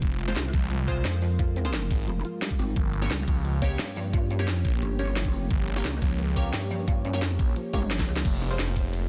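Dark, aggressive technical drum and bass at 175 BPM, cut from a longer piece, opens straight into a drop over Fm and Gdim chords, where a knocking electronic kick and a layered kit of cracking snare, crisp hats, ride, crash, toms and cabasa drive a swirling phased detuned saw bass and a heavy, saturated pulsing wobble bass up front, while a moody ambient pad, a soft round arpeggiated pluck with chorus and delay, and a muted filtered dub chord stab sit in the background of a dense, heavily limited mix, capped by a drum fill at 7.7 seconds.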